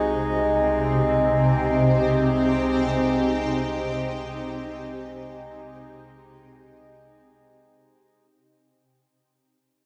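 A serene ambient passage in free time opens with everything sounding at once under a fade: a shimmering pad sustains a C minor chord up front, its detuned sine layers treated with chorus, phaser and an octave-up glow. Beneath it a round sub bass holds a deep low note while a reedy, breathing pedal harmonium drones, and a close-miked glass harmonica adds a pure, dry tone above. The whole fragment, cut from a longer piece, sits in a cathedral-like reverb with a cassette-tape character and fades out across its roughly 8 seconds.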